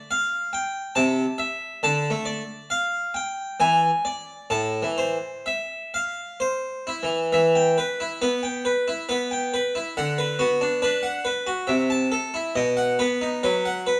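A solo Flemish-style harpsichord, strung with two sets of strings, sits up front and carries this solemn, grave fragment of a baroque-style suite movement. Its plucked tone is airy yet full, spanning A2 to A5 in a stately triple metre shaped by a rubato feel. The short passage presents the same opening section twice, the second statement beginning at 7.3 seconds. The harmony moves through chords such as Dm, E7 and Am before turning to Em and Bm/D, and it halts on a B chord near the 14.0-second cut. A moderate large-studio reverb lends the instrument a lingering, spacious halo.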